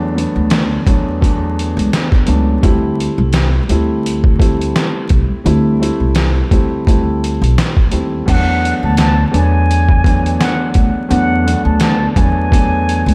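A gritty, sampler-style drum kit sits up front in this confident, nostalgic boom-bap hip-hop excerpt, its thumpy kick, medium-tuned snare, hi-hat and crash sounding compressed and pitched down, as if re-recorded in a large room. The groove moves at 85 BPM in 4/4 with a light 55% swing on the sixteenths, the drums arriving at 0.2 seconds. Beneath them, a plucked upright bass with steel strings gives a woody, growly low end, while a dark grand piano plays mellow, smooth, vintage-toned chords with long sustain, trading between E9sus4 and D9sus4. At 8.3 seconds a trumpet with a plunger mute takes a jazz-style solo, its wah-wah tone carrying light vibrato, scooped notes and a touch of delay. Light small-room reverb and a layer of vinyl crackle give the whole track a worn, dusty patina.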